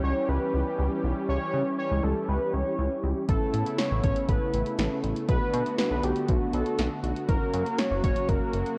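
Melancholic, nocturnal synth-pop drifts along in a straight 4/4, cut from a longer piece, with the whole mix bathed in light digital reverb and the warbling pitch drift of worn cassette tape. A fat, detuned analog lead carries the melody up front through an analog delay, over a dark, glossy chorused synth bass with a filter pluck, a mellow synth brass sitting in the background, and a bold, bright brassy pad holding sustained chords that drift through C#dim, Aadd9, Bm7 and F#. At 3.3 seconds a punchy analog drum machine enters with kick, snare and hi-hat, sounding tape-warm and re-recorded in a small room.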